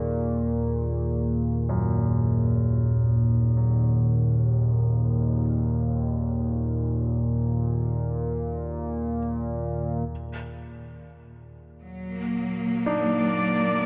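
A warbling, detuned analog drone sits up front in this unsettling dark ambient piece, its chorus-thickened sawtooth tone sustaining low beneath the very quiet, metallic ring of a bronze singing bowl. From 1.7 s, a polished concert grand piano plays arpeggios with audible action noise and tape echo, and at 11.8 s a lush, bowed cello section enters close and up front with sustained chords. The music hangs in a vast cathedral reverb, giving it a cavernous, echoing depth.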